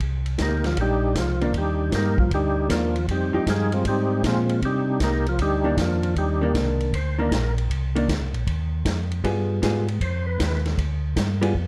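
A mellow tonewheel organ carries the bass line from the opening of this excerpt, its round, dark tone shaded by chorus vibrato and a slow rotary speaker. Alongside it, a vintage acoustic drum kit plays hi-hat, kick, ride and a medium-tuned snare, with a punchy, rolled-off sound. The music is a smoky, soulful soul jazz organ trio in C minor at 156 BPM, swinging its eighth notes in 4/4 over Cm9, Fm9 and G7b9 harmonies. At 0.4 seconds a percussive tonewheel organ steps up front with the solo, full and lightly overdriven with second harmonic percussion, slow rotary speaker, chorus vibrato and plate reverb; it pauses after 7.5 seconds and returns briefly near the close. A clean, picked hollow-body electric guitar enters at 1.4 seconds with a compressed, shadowy accompaniment part, and the whole passage sits in a dusky production with light reverb, cut from a longer piece.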